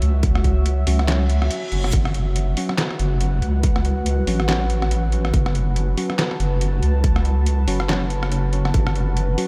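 Lightly reverberant, this brooding, heavy deep dubstep fragment rides a half-time, swung feel, with a deep, detuned wobble bass up front and a dark, wave-folded ambient pad holding sustained chords under vintage sampler grit. A punchy, overdriven electronic kick enters at 0.2 seconds beside a muffled, pitched-down trip hop drum kit of handclaps, hi-hat, rim click and snare. A worn, slightly out-of-tune tine electric piano adds stabs through dub echo from 0.9 seconds, and a reverse cymbal rises in the background at 1.3 seconds.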